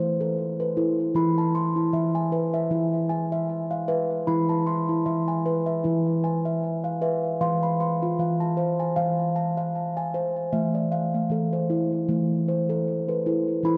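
A round, pure steel tongue drum played with soft rubber mallets rings out alone and up front from E3 to C6, its mellow tones carried by a delay and bathed in a long cathedral reverb, in this gentle, meditative world piece cut from a longer work, moving at 77 BPM in 4/4 with a light sixteenth-note swing and a dark production, tuned to A4 = 441 Hz, as the harmony shifts from Am/E to E at 1.2 seconds and returns to Am/E at 10.5 seconds.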